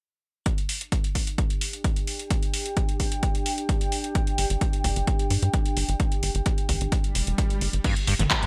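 Dark and driving, this short cut from a longer piece is peak-time techno at 130 BPM in a straight 4/4, with a bright 1980s-style digital sheen and a touch of light reverb. A punchy, layered electronic kick sits up front from 0.5 seconds alongside a techno kit of metallic hats, handclaps, toms and crash cymbal, whose hats, cymbals and toms pump against the sidechain and carry a gated reverb. At 1.7 seconds a warbling, lo-fi pad drifts in with a nostalgic, detuned tape-like character, its slow attack, chorus and ring-modulated shimmer pumping softly beneath the beat. A tight, sawtooth-and-square sequencer bass with a fast filter pluck joins at 4.4 seconds, dark and up front in the low register. An electronic swell rises just before a screaming acid line bursts in at 7.8 seconds, squelchy, resonant and distorted with an analog chorus, while a swarming, detuned drone hovers barely audible underneath.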